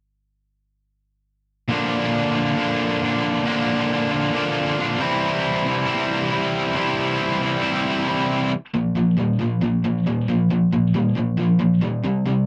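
A dry, close 1970s-style studio sound with light reverb frames this confident, sunny rock excerpt at 136 BPM in a straight 4/4, where a cranked stack guitar with overdrive and a second overdriven electric guitar with harmonic tremolo, both bright, picked and up front, play riffs together from 1.7 to 12.5 seconds over Bb and C chords before settling on a Bb5 power chord as the music shifts into a new section at 8.7 seconds.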